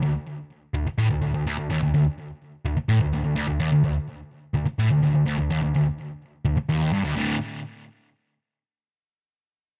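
A sludgy, distorted electric guitar opens alone on a D5 chord, playing picked, double-tracked lines between D2 and D3 in an aggressive, relentless metal excerpt at 126 BPM in a straight 4/4. Its dark, overdriven tone sits up front with a digital delay, set in a moderate studio ambience. The guitar stops at 7.4 seconds, shortly after the music shifts into a new section at 7.2 seconds that runs to 9.1 seconds.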